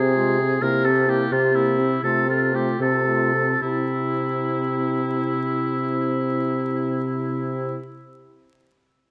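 Lively and cheerful, this short cut from a quick classical-period movement for wind quintet rolls along in a lilting 6/8, easing its pace over the first 3.6 seconds before a second section begins. A clear oboe with light vibrato carries the second line up front beside a smooth-topped bassoon bass, while a soft-attacked, warm clarinet and a mellow French horn fill in the accompaniment from the background. Generous scoring-stage reverb lends a distant, roomy sheen, and the dark production is dusted with vinyl crackle.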